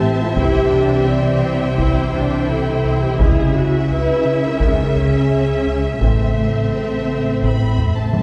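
Hard-stick taiko drums in a small room drive a straight 4/4 pulse from 0.4 seconds and close with a fill at 7.8 seconds beneath this brooding, vast cinematic cue, cut from a longer hybrid orchestral and electronic film score, where a background violin melody with focused vibrato floats over a second violin line with expressive portamento, soft-attacked violas, a mellow French horn section holding chords, a very quiet bright trombone section, a hollow, warbling, flute-like pad, a deep, round analog bass riff, and a woody double bass section under a lush cello section, the ensemble heard from further back in a wet scoring-stage reverb.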